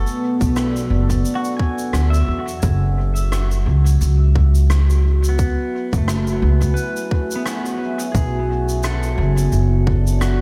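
A dark, detuned sawtooth pad with chorus and reverb opens this hazy, spacious ambient dub excerpt, alongside a clean, twangy pedal steel guitar playing fingerpicked slide arpeggios through analog delay and a woody, thumpy pizzicato upright bass sitting up front. A tight, tape-toned electronic kick and a natural-sounding shaker and rim click, the latter soaked in dub echo and hall reverb, settle into a lightly swung 4/4 groove. The echo-heavy mix drifts from Bm9 to F#m11 at 2.6 seconds and back to Bm9 at 8.1 seconds.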